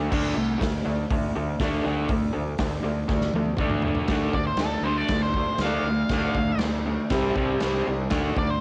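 Gritty and menacing, this short garage rock passage is cut from a longer piece and has the murky feel of a home recording on cassette, touched with light reverb. A double-tracked, overdriven rhythm guitar drives the riff up front in lo-fi grain, over a punchy fuzz bass played with the fingers. The drum kit sits close in a bright stone room yet sounds smooth and rolled-off, with a tight kick, a medium-tuned snare, hi-hat, crash cymbal and toms, and a drum fill runs from 3.1 to 4.1 seconds. At 4.1 seconds the harmony moves from a bare D power chord to D minor, and from 4.3 seconds an octave-fuzz lead guitar, dark and distorted, takes a picked solo in its upper register until the end, with the chords shifting to a C power chord at 7.1 seconds.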